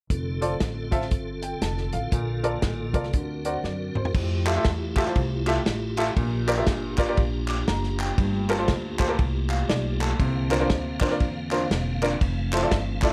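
A swung 119 BPM groove in 4/4 drives this reverent, jubilant slice of uptempo gospel in F major, taken from a longer piece. The soul drum kit sounds distant and roomy, with dark cymbals, a tight kick and a rolled-off top, while a woody pizzicato upright bass holds the low end from the first moment. A tonewheel organ sustains chords through a fast rotary speaker and chorus vibrato, its piping, scooped tone carrying a touch of key click, and a clear, slightly worn grand piano sits up front as accompaniment from 0.4 seconds. A drum fill at 3.6 seconds leads into a second section at 4.1 seconds, and hollow group handclaps join from a large room at 4.5 seconds. The harmony moves from F6 through Bbmaj7 and D7b13 before settling into Fmaj9, Bb6, Gm9 and C9sus4, resolving on Fmaj7, all under light studio reverb.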